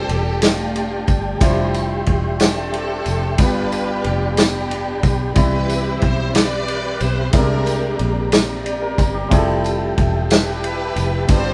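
A punchy soul drum kit sits up front in this slow, soulful and jubilant gospel excerpt in 6/8, its kick, medium-tuned snare and dark ride cymbal entering at 0.1 seconds. A round, foam-muted fingered electric bass holds down the low end, while a clear grand piano supplies the accompaniment. A soft, flute-like tonewheel organ holds sustained chords with audible key click, a slow rotary speaker and chorus vibrato. A lush, distant string section carries the melody with expressive vibrato and portamento, and a jingly tambourine joins in the background from 0.4 seconds. The band plays live together in one room with a moderate large studio reverb, moving through rich harmonies from F69 and Dm11 to G7, Cmaj7, Abmaj9#11 and Fmaj9.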